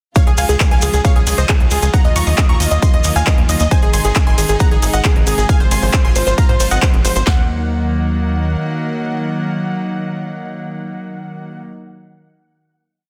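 A four-on-the-floor kick drives this short, emotional uplifting trance piece at 135 BPM in 4/4, with a punchy snare, handclaps, crisp programmed hats and ride, and grainy maracas shaking hand-played sixteenths in the background. Under it, a tight, saturated sequencer bass rolls in sixteenths, its sawtooth, square and sine layers wave-folded with a filter pluck and a moving notch, pumping against the kick. On top, a soaring, airy supersaw stab repeats a riff over a pedal note in thirds and sixths, detuned and layered with noise, pumping and trailed by dub echo. A bright, very quiet unison pluck doubles that melody. Beneath, a rich chamber string section holds floating, soft-attack bowed chords over Db, Ebmadd9, Ab and Fm/Ab in Eb dorian. The drop runs from 0.2 to 7.3 seconds, when the drums fall away on a closing Ebm chord that the leads and strings sustain, the pluck ringing last until 11.8 seconds, all in a dense, heavily limited, dry mix.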